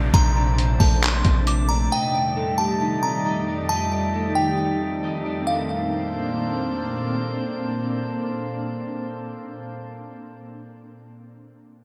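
Atmospheric cloud-rap hip hop at 135 BPM in a half-time feel, dreamy and blissful, moving from Bbmaj9 to F13 and back in a bright 1980s-style digital production with moderate plate reverb. A short burst of gritty, pitched-down trip hop sampler drums with a thumpy kick, hi-hat and gated handclaps sits up front alongside a deep, mellow sine 808 bass and a faint downlifter, all three dropping out before 2 seconds, while an ethereal, warbling detuned pad holds chords beside a drifting glass-harmonics texture. Over this, a dark, slightly broken-up electric guitar plays delayed arpeggios and a delicate, tinkling FM bell carries the melody through a phaser until 6.8 seconds, in a passage cut from a longer piece.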